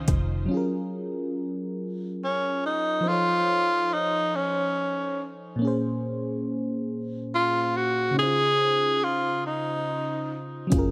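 Slow R&B in six-eight, warm and sensual, cut from a longer piece with a bright 1980s-style digital sheen and light reverb. A mellow FM electric piano carries the accompaniment throughout, its round, full-bodied tone with a fast attack, decaying notes and a noise layer shimmering under a chorus effect. At the very start, a distant, lush string section sounds a bowed chord in the background, while a dark, foam-muted fingered bass and an electronic drum kit, with a soft kick and metallic hats re-recorded in a large room, appear only briefly before returning near 10.7 seconds. From 2.2 seconds, a breathy tenor saxophone takes the jazz-style solo melody up front, whispered and smooth on top, with vibrato, scooped notes and a digital delay trailing its phrases. Rich extended chords such as major ninths and a minor ninth give the passage its plush, late-night glow.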